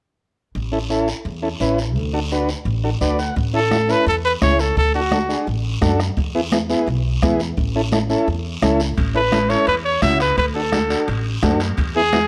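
A straight 4/4 cumbia pulse at 171 BPM in A major sets a joyful, sunny mood in this short cut, as raspy guiro and a woody, pizzicato upright bass open beside a mellow vintage combo organ with heavy vibrato that plays a fill at 2.8 seconds, then a soft-beater bombo and bright background congas join at 3.4 seconds, a trumpet with light vibrato takes up-front solo phrases from 3.6 seconds, and distant, ringing timbales arrive near the end, all under light reverb.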